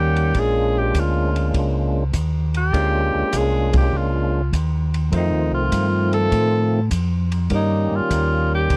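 A vintage-toned tenor saxophone with light vibrato takes the solo up front in this greasy, soulful soul jazz organ trio excerpt, swinging at 100 BPM over Bb7#9, F7 and Eb7 changes. Beside it, a fat, lightly overdriven tonewheel organ with third-harmonic percussion and a slow rotary speaker plays melody, while a second tonewheel organ, round, dark and clean with chorus vibrato and slow rotary, carries the bass. A compact cocktail drum kit enters at 0.2 seconds with dark cymbals and a punchy kick on hi-hat, kick and ride, all captured in a dry, close 1970s-style studio sound.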